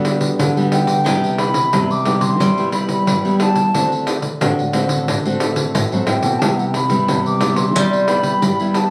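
Sunny and playful, this short excerpt cut from a longer samba and choro piece moves at 90 BPM in 4/4 over Gmaj7/D, Cmaj7 and D7, with a fingerpicked, full-bodied nylon-string guitar carrying the accompaniment (finger squeaks audible), a second thumb-plucked nylon-string guitar holding the bass, and a jingly, saturated pandeiro up front under soft hands, joined by an airy, wooden baroque flute entering at 0.7 seconds with a tongued, straight-toned melody in plate reverb, all caught on a phone in a room with club reverb and compression.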